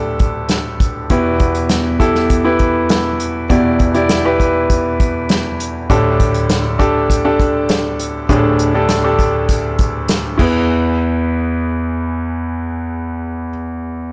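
A straight 4/4 pulse at 100 BPM drives this bittersweet, piano-driven pop excerpt in E minor, cut from a longer piece. A clear concert grand carries the accompaniment from the first moment, spanning D2 to D5 with deep bass, an intimate, natural character and audible action noise, sitting up front. An acoustic drum kit joins at 0.2 s, played with bundle sticks on crash cymbal, hi-hat, a punchy kick and a medium-tuned snare with soft clipping, set up front in a small-room sound. The harmony moves from Dsus4 to Em and back to Dsus4 before landing on an E chord. The drums stop at 10.5 s, and the piano carries on alone through a brief second section and on until 14.1 s. A moderate large-studio reverb surrounds the parts, and the whole recording is blown-out and overdriven, giving it a driving edge.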